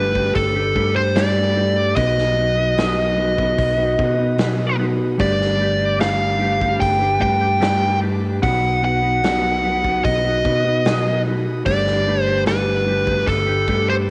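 A lightly reverberant small-room sound frames this hypnotic, kaleidoscopic psychedelic rock excerpt at 74 BPM in 4/4, where an up-front, dark fuzz lead guitar with slapback echo carries the melody over a clean, compressed electric guitar riff played through a rotary speaker, a round fingered bass, a gritty, saturated garage drum kit with a punchy kick that enters at 0.2 s, and a very quiet, reedy tonewheel organ with key click holding sustained chords as the harmony alternates between Gadd9 and B.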